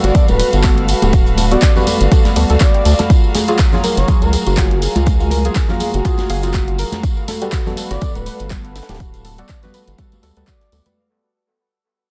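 An overdriven, layered electronic kick drum sits up front in this relaxed deep house piece at 122 BPM, with a 16th-note swing, joined by a round analog bass that is deep, mellow and wave-folded, pumping against the kick. A punchy analog drum machine adds handclaps and hi-hat, a very quiet, dry reggae kit with a high-tuned snare joins in, and a jingly tambourine and bright, hard-handed congas fill out the groove from the background. A breathy, flute-like synth lead carries the melody with vibrato, chorus, tape echo and a touch of vintage 12-bit sampler grit, over a soft, gentle pluck arpeggio and a dark, phased chord stab, both trailing dub echo. Beneath them, a moody, detuned analog pad, a warbling, nostalgic tape-like pad and an intimate chamber violin section bowed sul tasto hold the sustained harmony, moving from Gmaj9 to F#maj9 at 3.1 seconds and back to Gmaj9 at 7.0 seconds. The dense, heavily limited mix, set in studio reverb, begins fading out at 3.1 seconds, and this short section is cut from a longer piece.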